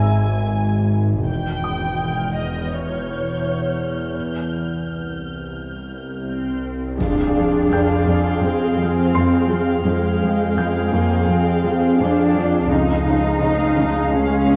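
In a straight 4/4 pulse, this eerie, ominous cinematic fragment sets a veiled con sordino violin melody over dark cello and double bass sections with transformer saturation, a tense, wave-folded, string-like drone up front, faint high violin texture, and a soft felt-muted upright piano with audible action noise in the background until 12.7 s; at 7.0 s a huge, bright impact lands as a second violin line, a lush viola accompaniment and a background cello riff join, and the recording sits in a concert hall reverb with a worn, warbling cassette-tape pitch drift.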